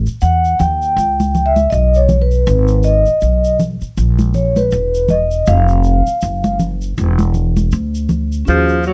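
A dark, lightly reverberant production frames this nocturnal, cool jazz-hop excerpt at 80 BPM with a swung 16th-note feel, where a woody, thumpy pizzicato upright bass and close, dry tube shaker and congas played with soft hands support a mellow, ringing vibraphone solo with slow motor vibrato from the opening, before a breathy, distant alto saxophone with scooped notes slips in at 8.5 seconds just as the clip is cut off.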